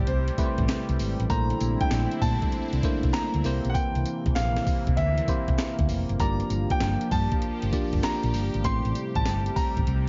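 Slick and punchy, this excerpt from a longer new jack swing R&B piece moves at 98 BPM with a 16th-note swing in G dorian. A bright, brilliant concert grand piano carries the melody through tape echo over a bell-like tine electric piano with phaser, a sweeping, airy sawtooth pad with chorus, and a round, punchy hollow-body fingered bass, while an up-front, gritty breakbeat kit with thumpy kick and tambourine enters at 0.1 seconds and a very quiet, hollow group handclap joins at 0.7 seconds. The chords move from Am7 through Bbmaj9#11, C7 and Gm7, all set in light digital ambience within a dark, warm production.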